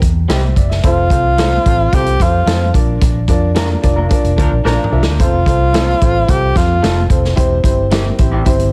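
A breathy, whispered tenor saxophone carries the melody up front in this danceable excerpt of uptempo 1960s-style soul at 110 BPM in F major, its scooped notes and vibrato riding over a punchy vintage drum kit and a dark, foam-muted fingered electric bass. A woody, slightly detuned upright piano opens with a fill and stays on as accompaniment, while a twangy, slightly broken-up electric guitar adds stabs with lush chorus in the background, and a distant horn section joins the band accent briefly from 4.4 s, just before a drum fill. Plate reverb on the piano, guitar, saxophone and horns, along with a heavily compressed radio sound, gives the whole a warm period character.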